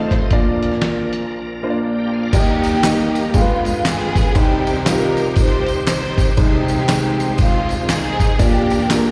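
Heard as a live gig through the venue's PA, with recital hall reverb around it, this short cut from a longer uptempo gospel piece moves at 119 BPM in a swung 4/4 in Eb major, with a reverent, hopeful mood. A woody upright piano with slapback echo and a gritty, compressed sampler-style drum kit with a thumpy kick and fat snare sit up front, while a bright, shouting tonewheel organ holds sustained chords through a fast rotary speaker in the background, taking a short fill at 1.6 s during a break that begins at 1.3 s. At 2.3 s a dark, lush bowed string section with slapback echo enters up front with the melody, joined by a close, dry tambourine and group handclaps, over chords moving from Eb through G7b9 and Cm to Ab/C and Bb.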